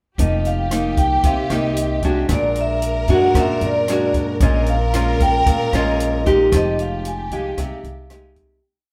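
Bossa nova in F minor at 114 BPM, wistful and smooth, with a metallic, ringing vibraphone carrying a motif-based melody over a long, lush bowed guide-tone line from a violin section, an up-front fingerpicked nylon-string guitar playing thumb bass and syncopated plucked chords, a woody, growly upright bass on dotted root and fifth, and a dry cocktail kit of hi-hat, tight kick and rim click, all in one room under moderate large studio reverb, moving from Fm11 to Fm9 before fading out from 6.5 to 8.6 seconds.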